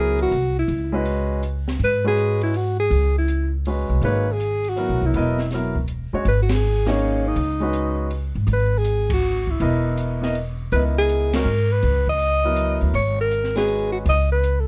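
A swinging jazz waltz in three drives this spiritual, intense modal jazz excerpt, with the whole band hitting accents at 6.4, 9.0 and 11.3 seconds over a single minor-ninth chord. A breathy, mellow alto saxophone with vibrato and a soft subtone carries the melody up front, while a concert grand piano with deep bass comps beneath it and a woody, thumpy upright bass with gut strings anchors the low end. Lower in the mix, an acoustic drum kit with a high-tuned snare, boomy kick, hi-hat and ride keeps time in a close, dry and detailed studio sound.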